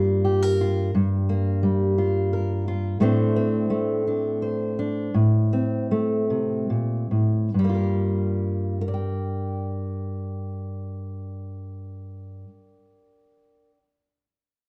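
Moving in a straight 6/8 at roughly 46-58 BPM counted in dotted quarters, this slow folk piece eases its pace between 3.0 and 7.5 seconds before settling into a second phrase at 7.5 seconds. A lone fingerpicked steel-string acoustic guitar carries the accompaniment for the whole 13.8 seconds, ranging from G2 to G5 and sitting up front in the mix, where finger squeak adds a close, human touch. The harmony stays in G minor, drifting from Gm7 to Amadd11 and back to Gm7, with the instrument tuned slightly low to A4 = 436 Hz. The guitar's dark tone rests in a large studio space with a moderate 1.3-second reverb that lends it an auditorium-like depth, and the overall production is warm. The mood is wistful and intimate, and the passage is cut from a longer piece.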